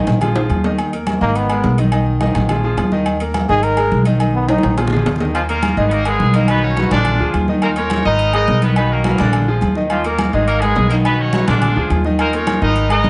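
A bright, open concert grand piano starts this fiery, passionate salsa excerpt, its deep bass and long sustain carrying the harmony at a brisk clip. A woody, thumpy pizzicato upright bass sits up front beside it, while close, dry agogo bells and timbales ring out against distant, thick-skinned congas played with soft hands in a large room, with a drum fill at 0.4 seconds. At 1.2 seconds a present solo trombone takes the melody with light vibrato, playing until 4.8 seconds as another fill leads into the next passage. At 5.3 seconds a punchy, tight horn section with a vintage character and octave doubling takes over the tune, up front and brilliant. The whole piece sits in a moderate studio reverb, and the chords move through a churning cycle that keeps the fire going to the cut.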